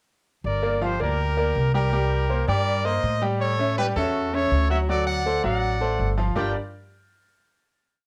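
A bright trumpet section with vibrato leads this short, fiery and danceable Latin piece in G minor at 162 BPM, playing song-like motif phrases partly doubled in thirds over a brilliant grand piano montuno in octaves, both carrying a cassette tape colour, while a woody, thumpy gut-string upright bass plays a pizzicato tumbao that anticipates the chords, moving from Gm7 through Cm7, A7 and D7 before the final Gm7 chord at 6.4 seconds, all in a moderate studio reverb on a home cassette recording.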